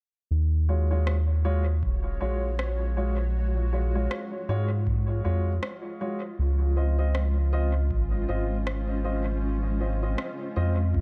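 A round analog bass opens this spacious, hazy ambient dub excerpt at 0.3 seconds, deep and up front at a relaxed 79 BPM with a swung sixteenth feel in Eb dorian, as a dark, woody upright piano soon adds stabs trailed by dub echo. An overdriven electronic rim click, dressed in reverb and echo, and a deep electronic kick join, while a blurred, detuned granular pad from 1.4 seconds holds sustained chords colored by its own built-in reverb. The harmony rests on Ebm11 before shifting to Dbmaj9 at 6.4 seconds, all within an echo-heavy mix.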